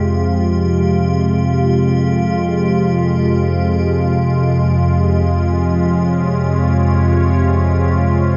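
Drenched in a huge, dark reverbed space, this ominous, desolate dark ambient drone fragment unfolds in free time, moving from Fmadd9 to Dbmaj7#11/F at 2.0 seconds. Up front, a mellow analog drone of sawtooth and pulse-width-modulated pulse waves holds the low register with chorus, while a bright, airy sweeping pad of detuned sawtooths and a noise layer sustains chords through a resonant filter swell. Higher up, a quiet icy glass pad adds a crystalline, detuned sine shimmer with a moving notch, chorus and its own reverb, all three parts sounding throughout the 8.4 seconds.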